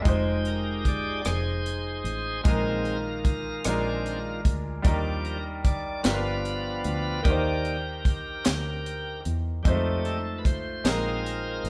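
A woody upright piano with audible action noise opens this jubilant, hopeful slow gospel excerpt in 6/8. The organ takes the lead at once, shouting and up front with key click and a fast rotary speaker, over a round, foam-muted fingered bass and a tight, dry funk kit with a high-tuned snare, rim click and hi-hat. Very quiet, hollow handclaps join at 6.1 s, and the band sounds as if playing live together in a large studio with moderate reverb.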